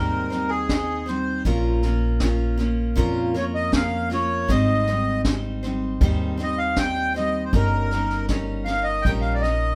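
A reedy, airy accordion carries the melody up front from the first moment, over a bright, full-bodied picked steel-string guitar with audible finger squeak and a woody, thumpy pizzicato upright bass on gut strings, joined at 0.3 s by a distant, roomy brush kit with a punchy kick and high-tuned snare, in a gentle, nostalgic acoustic folk piece at 79 BPM in Ab major that moves through Abmaj7, Bbm and Eb7/G, played live in one room with light reverb.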